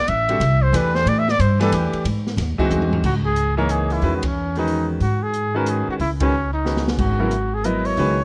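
A mellow, up-front trumpet opens this intense, searching modal jazz excerpt at 182 BPM in a swinging 3/4, its scooped notes carrying the melody as woody, thumpy pizzicato upright bass, a dark small-room drum kit with a boomy kick, and a clear, intimate baby grand piano with audible action noise join in. A drum fill at 2.7 seconds leads into C# dorian over a C#m11 chord from 3.0 s, followed by band accents at 4.2 and 6.2 seconds and another drum fill at 6.7 seconds, all set in light reverb.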